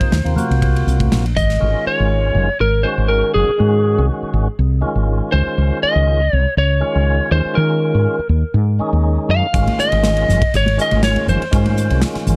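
A woody, round fretless bass sits up front in this slick, funky electric jazz fusion excerpt at 121 BPM in Ab mixolydian. Above it are a slightly broken-up, compressed lead guitar melody with tape echo, a percussive tonewheel organ with key click turning through a slow rotary speaker, and a barely audible clean hollow-body jazz guitar that stops at 1.1 seconds. Airy, polished studio drums drop out at 1.6 seconds and return at 9.5 seconds. Bright, high-tuned congas enter at 0.4 seconds, drop out at 1.5 seconds and return at 9.7 seconds. Everything sits inside a dark, dry production.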